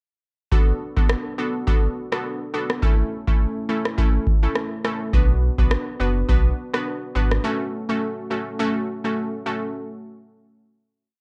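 At 0.5 seconds a glassy, crystalline wavetable pluck and a booming analog drum machine arrive together, setting up a hypnotic, bouncy dancehall groove at 104 BPM in 4/4 with a light swing on the sixteenths. The pluck plays syncopated chords in F# minor, moving through D6, A, Bm and F#m. Its detuned, chorused tone carries a sub octave and a filter sweep beneath its fast, decaying attack. The drum machine sits up front with a deep kick and sparse rim clicks, carrying the roomy character of a large space. At 5.1 seconds a deep, full sine sub bass with an octave layer enters with a syncopated, sustained line, and it drops out along with the drums at 7.4 seconds, leaving the pluck to ring on alone. The production is dry, dark and warm overall, with the top end rolled off.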